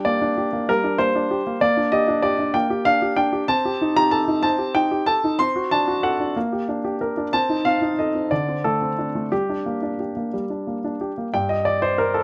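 Heard through close, detailed microphones in a stone room with a moderate reverb, this serious, dramatic passage from a classical-period piano sonatina features a clear, polished baby grand with short sustain, up front and alone for its full 12.2 seconds, moving with rubato in 6/8 across a range from G2 to C6 before arriving back on its home minor chord.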